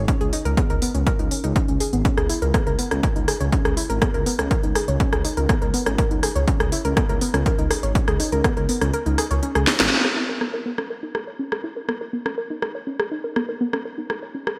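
A soft, round pluck opens this dark, driving melodic techno piece at once, spinning arpeggios through chorus, cassette-tape color, delay and sidechain pumping, over a menacing detuned saw bass that swells and pumps beneath it. An up-front electronic kick with a punchy, tape-warm body drives the groove alongside a techno kit of smooth hats, rim clicks and a cracking snare treated with gated reverb, both re-recorded in a small room. The kick stops at 8.5 seconds, and a drum fill and a full-band accent follow just before the bass drops away at 9.9 seconds. From that point the arpeggio carries on over the kit with a filter sweep shaping its tone, as the chords move through lush, suspended and added-note colors. A moderate hall reverb and a bright, 1980s-style digital sheen frame this cut from a longer piece.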